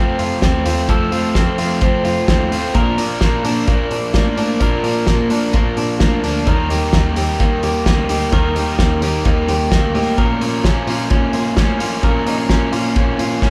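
A bright, youthful stretch of jangly indie pop opens with two electric guitars and a bowed cello sounding together, and the drum kit joins at 0.2 seconds. The up-front guitar, played through a small old amp, picks arpeggios with a slightly broken-up, lo-fi, compressed tone, while the second guitar supplies overdriven, picked accompaniment beneath it. A single cello carries the bass line from the background, smooth and even with vibrato, its rich tone set at a distance. The cloth-damped kit of hi-hat, kick and snare sits up front, thuddy and acoustic, with a fat snare, a tight kick and a rolled-off top. The band plays live in one large studio room with moderate reverb, moving through F, Bb, Eb and then Bb minor in a straight 4/4 until the cut at 13.5 seconds.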